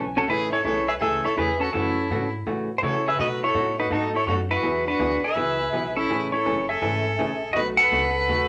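Western swing country with a cheerful, playful bounce, this clip is carried by an up-front, compressed lap steel guitar that sings the melody with slide and volume swells, while a dark, clean hollow-body jazz guitar picks the accompaniment through changes such as Amaj7, F#m7, B7 and Eadd9. A clear, bowed fiddle joins at 0.2 s with a smooth, even second line touched by light vibrato, and a woody, thumpy pizzicato upright bass anchors the swung groove. The whole is set in a wet studio reverb with a short decay.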